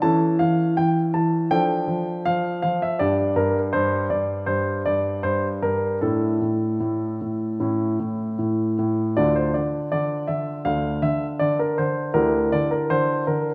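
A classical-period piano sonatina in D minor, this dramatic, elegant passage cut from a longer piece moves at a rubato 75-83 BPM in 4/4, tuned to A4 = 442 Hz. A clear, polished baby grand plays alone and up front across a range from D2 to A5, set in a wet recital hall reverb. Its harmony settles onto an A chord at 7.6 seconds before a new section opens on D minor at 9.2 seconds and closes on C9 over D.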